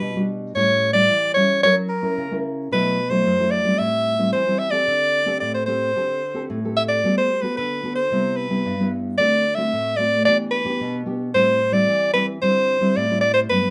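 A moderate small-room reverb frames this festive, joyful samba, cut from a longer piece. A breathy soprano saxophone carries the jazz-style melody up front with a soft attack and light vibrato, while a dark, full-bodied nylon-string guitar accompanies throughout, thumb-plucked with audible finger squeak. The harmony moves through rich jazz chords, from a rootless Em9 through Gmaj9 and Cmaj7 to a closing D9sus4.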